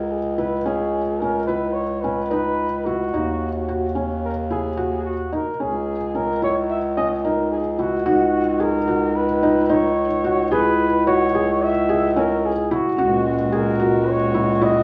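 This contemporary instrumental chamber piece moves in 9/8 at 219 BPM counted in eighths, with a straight feel, set in C# dorian and tuned to A4 = 438 Hz; the mood is pensive yet urgent. A mellow, distant flugelhorn carries the melody up front with jazz-style vibrato. Beneath it, a felt-muted upright piano plays soft, intimate arpeggios with audible action noise, while a clear, present bass clarinet holds the bass line in a classical style. At 8.1 seconds a vibraphone played with soft mallets, motor off, adds a metallic, ringing second line. At 13.0 seconds a reedy, breathing pedal harmonium enters close-miked and dry, laying full sustained chords up front. The harmony passes from C#m7 through D#m7 and C#madd9 to B/C#, back to C#m7 and on to F#add9/C#, all heard through a moderate recital hall reverb and a worn cassette tape with warbly pitch drift, in a clip cut from a longer piece.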